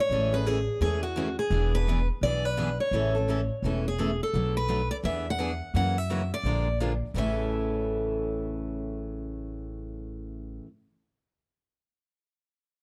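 This is a playful excerpt of acoustic string swing in the jazz manouche style, moving at a brisk 170 BPM in 4/4 with a lilting swing feel in A major. A picked steel-string concert guitar carries the melody up front, its bright fresh strings and audible finger squeak set in a plate reverb. Two picked dreadnought guitars provide accompaniment: one full-bodied and bright with its own finger squeak, the other warm and sitting in the background. The upright bass, plucked pizzicato on gut strings, sounds woody and thumpy and sits up front with the lead guitar. The harmony moves from Amaj7 and E7 into a passage through Bm7, E9, F#7 and Bb7 that begins at 4.3 seconds, before returning to A at 7.2 seconds. The overall production is dark, with a light reverb.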